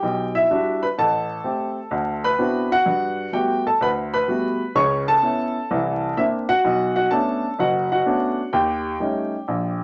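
A veil of vinyl crackle and a short, wet studio reverb surround this brief cut from a longer solo jazz piece, swinging at 127 BPM in 4/4 with a sophisticated, warm mood. A woody, polished upright piano sits up front and plays alone for the full 9.8 seconds, ranging from deep bass notes to bright upper register. It moves through rich extended harmonies such as Em9, D13, Gmaj9 and Bm9 before landing on a colorful Eb7#11.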